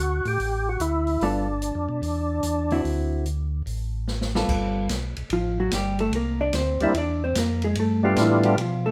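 A vintage hollow-body jazz guitar stands out in this greasy, bluesy soul jazz organ trio excerpt, its dark, clean, picked tone sitting compressed and up front as it comps from 1.2 seconds and then takes a solo from 4.5 seconds to the end. The tune swings at 146 BPM in 4/4 in G mixolydian, moving through extended chords such as G9, D9 and C9. A percussive tonewheel organ carries the melody in brief phrases at the start and again from 6.8 seconds, its full voice lightly overdriven with third-harmonic percussion, chorus vibrato and a slow rotary speaker. Beneath it, a second tonewheel organ plays a round, mellow bass line throughout, clean and dark with key click and its own slow rotary. An acoustic jazz kit with dark cymbals, a medium-tuned snare and a boomy kick sits further back, marking the turn into the guitar solo with a fill just before 4.5 seconds. A moderate studio reverb gives the trio a natural room sound.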